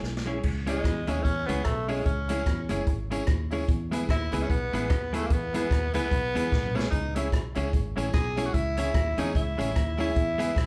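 Mischievous and driving, this swung ska excerpt opens with a drum fill from an up-front big-band kit with a boomy kick before a raspy, gritty tenor saxophone takes an up-front solo from 0.4 seconds over a round, dark fingered electric bass, clean compressed electric guitar with slapback echo, bright woody upright piano stabs and a distant, jingly tambourine, all played live in one large studio room, with a second drum fill at 6.5 seconds.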